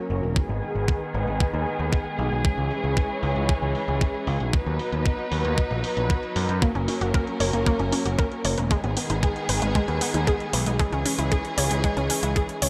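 A lush, bowed string section opens the sound at 0.0 seconds, holding smooth sustained chords with vibrato, softened by a low-pass filter and a shimmer reverb. Almost at once an overdriven picked electric bass arrives, up front and amped with tube saturation and digital delay, alongside bright, layered electronic hi-hats and a thumpy, sampler-style kick drum that sits forward in the mix. This is sunny, danceable Italo disco at 115 BPM in a straight 4/4, moving through G#m, C#m, B/D# and F# before returning to G#m and C#m. At 6.6 seconds a round, detuned analog pluck joins with fast-attack arpeggios, its sawtooth-and-square tone carrying a noise layer, chorus, digital delay and shimmer reverb. The whole piece has a glossy 1980s-style digital sheen and a moderate hall reverb, and it is cut from a longer piece.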